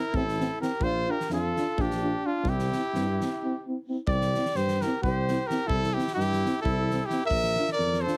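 A punchy, up-front trumpet with light vibrato leads this wild, virtuosic Balkan brass band excerpt in 7/8 at 258 BPM, speeding up throughout, with a distant, roomy flugelhorn on the second line, a mellow euphonium and, in the background, a soft-attack French horn as accompaniment, a mellow tuba holding the bass, and a loose acoustic drum kit with a fat snare and punchy kick, all in C mixolydian through Am, Bb and C chords, with a break at 3.4 seconds and a heavily compressed, radio-like sound with light reverb.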